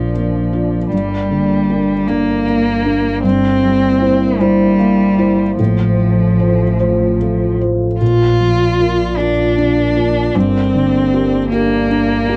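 In 6/8 at 51 dotted-quarter beats per minute, this neoclassical piece for piano and strings moves with a loose, rubato feel, hopeful and intimate in mood. A felt-muted upright piano carries the accompaniment, its tone soft, mellow and vintage behind thick felt. Alongside it, a single bowed cello sings a second line with vibrato, smooth and even, sitting up front yet slightly distant. Beneath them a bowed double bass, rich and focused, holds the low end, while a dark analog pad with chorus, built from detuned sawtooth and triangle tones with a sub octave, sustains moody chords in the background with a slow attack and long release. The harmony turns through Bb, Gm, C7/G and F/A before returning to Bb and Gm, all captured in a dry, close studio sound with a 1970s character in this 12.4-second fragment of a longer work.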